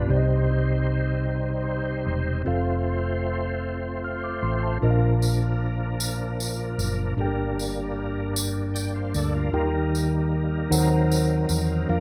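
Jubilant yet reverent, this slow gospel excerpt in a straight 6/8 pairs a mellow tine electric piano's accompaniment with sustained chords from a reedy, lightly overdriven tonewheel organ spun through a fast rotary speaker with key click and chorus vibrato, all anchored by a dark, round, punchy hollow-body bass, while a jingly tambourine joins at 5.2 seconds over the light reverb of a rough home demo mix.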